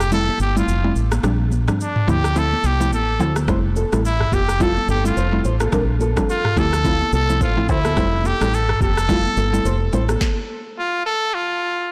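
Breezy and romantic, this afrobeats cut has a bright, punchy trumpet carrying the melody up front with light vibrato and delay, over a round, foam-muted dub bass, an electronic afro-pop kit with a deep kick and sharp snare, a woody chorused synth pluck and high-tuned congas sitting in the background. A dark, thumb-plucked nylon-string guitar riff with delay enters at 3.5 seconds, and the band stops at 10.2 seconds while the trumpet carries on until 11.9 seconds. The sound is blown-out and overdriven, with light reverb and small room ambience.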